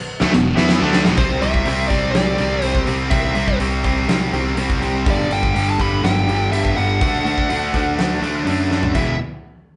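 A dark, smooth, overdriven lead guitar carries the melody from 1.2 s in this aggressive, driving hard rock excerpt at 124 BPM in 4/4, riding over picked riffs from a bright cranked stack guitar and a distorted electric guitar, a double-tracked high-gain guitar that sits in the background until 1.2 s, a growly, direct electric bass, and a big acoustic drum kit with a fat snare and punchy kick that opens on a fill and adds another at 8.7 s, with the band recorded live in one large studio room with moderate reverb as the chords move through E5, C, G5 and D.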